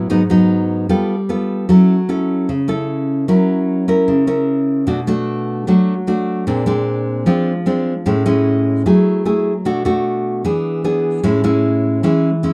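A straight, even bossa nova pulse in four runs through this short, sophisticated and sunny passage cut from a longer piece. A lone nylon-string guitar carries it from 0.0 to 12.5 seconds, fingerpicked with a full-bodied, deep classical tone and placed up front in the mix. Finger squeak along the strings adds a close, human detail to the playing. The harmony moves through rich jazz colours, from G#m7 and G9 through F#7, Bm7 and Bb9, before settling on Amaj7, passing through F#m9, Bm7 and E7, then resolving to Amaj7 at 11.2 seconds. A moderate studio reverb gives the guitar a modest sense of room, and the production stays dark and warm throughout.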